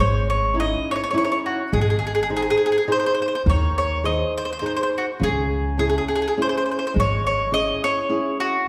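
A rubato waltz lilt carries this passionate, wistful fragment of an Italian folk serenade, where an up-front, round-toned mandolin sings the picked melody on its doubled strings over a fingerpicked flamenco guitar with audible finger squeak and a woody, thumpy pizzicato upright bass that drops out at 7.7 seconds, all moving from C#madd9 to G# and back to C#m within a reverberant recital hall heard from further back in the room.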